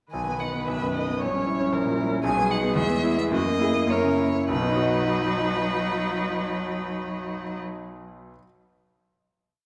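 In a rubato 2/4 at roughly 97 to 116 BPM, this quick classical-period movement for piano quartet in B major is a whole piece, spirited and cheerful, and it slows down from 1.7 to 4.5 seconds before settling on a final chord. The bright concert grand piano sits up front with a brilliant tone, laying down a broken-chord bass that reaches deep into the low register. A single violin, focused and sung with vibrato, carries the melody, while the viola, smooth and even, weaves a counter-melody and holds sustained chords. The cello adds a rich second line with vibrato, tremolo and sustained chords, and all three bowed strings sound distant, placed well behind the keyboard. The harmony moves from B through A#dim7, back to B, then E and F#7 before resolving home to B at 4.5 seconds. A wet scoring-stage reverb surrounds the ensemble, and once the strings stop at 7.6 seconds, the piano rings on alone until 8.5 seconds.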